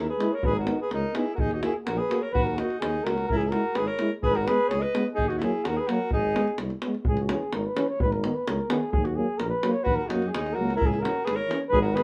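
A straight 2/4 pulse at 128 BPM drives this bittersweet, virtuosic Balkan brass band excerpt in G# minor, with a tight, vintage-sounding davul up front and a soft-attacked tuba holding down the bass. A mellow flugelhorn carries the melody with light vibrato, shadowed by an alto saxophone second line with vibrato that drops out at 6.6 seconds and returns at 9.8 seconds, while a close-miked euphonium and a smooth-topped trombone fill in the accompaniment. The band sits in a small, moderately reverberant room as the chords cycle through G#m, D#m and C#m.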